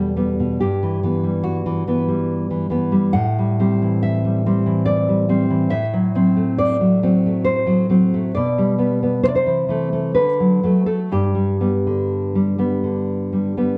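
Tender and nostalgic, this short cut from a longer romantic piece for solo classical guitar moves in a rubato 3/4 at roughly 60-72 BPM in G major, with a dark, full-bodied, thumb-plucked nylon-string guitar sitting up front, touched by slapback echo and light reverb in a dry, close 1970s-style studio sound, as its harmony drifts from Em through Am7 and D7/A before settling on G at 11.1 seconds.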